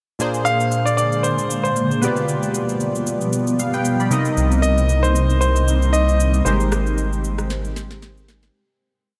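A steady electronic shaker, syncopated rim clicks and a sharp snare set a soulful, hypnotic amapiano groove at 115 BPM in 4/4 with a light 16th-note swing, framing a dreamy breakdown soaked in huge ambient reverb over chords of Bb9, G7/B, Cm7 and Abmaj7. Round, sawtooth-edged analog keys play syncopated, spread-voiced chords with short fills, colored by chorus, phaser and a filter sweep. A cloudy, evolving granular pad with ring modulation drifts beneath, while an intimate, clear grand piano, its action noise audible, sings a motif-based melody of call phrases through tape echo. A deep, thick, saturated sub bass enters at 4.4 s with sustained notes, before a fade-out that begins at 6.5 s and a drum fill from 7.5 s close the piece.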